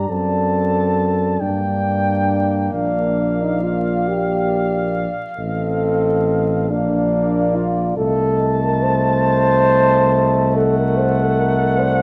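A slow, rubato, hymn-like brass band passage in 6/8 at 46 BPM opens with every voice sounding together: a punchy, distant cornet sings a melancholic, elegiac melody with vibrato over a dark, soft-attacked French horn section in the background, while a clear, punchy trombone and a warm euphonium with light vibrato accompany and a mellow tuba anchors the bass up front, the harmony moving from D7/F# and Gm through Bb and F7/A to Adim/C in a moderate recital hall reverb under a layer of vinyl crackle.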